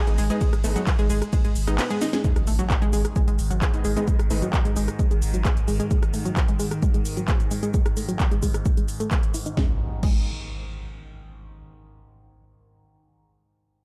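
A dark, warm digital ambience frames this short cut from a driving, hypnotic peak-time techno track at 131 BPM in G# phrygian, opening on a drop over a G# minor chord. A round, bright analog pluck carries the riff throughout, its sawtooth and square-wave tone thickened by a sub octave, chorus, sidechain pumping and dub echo, while an aggressive, detuned rave stab sits in the background with reverb and echo until about 4.5 seconds. A thick, saturated sub bass holds a deep G#1 with tube grit and pumping under a low-pass filter, and the punchy electronic kick, re-recorded in a small room, sits up front from 0.4 seconds. The layered, overdriven drum kit adds a cracking snare, smooth hats, handclaps, rim clicks, shaker, ride and crash, with a drum fill at 2.0 seconds leading into a background impact and a filter sweep on the synth arpeggio as the harmony shifts to a bare G#5. From 3.0 seconds a resonant drone with moving overtones, phaser and long release drifts in beneath, and the passage closes on a final impact with the chords falling away.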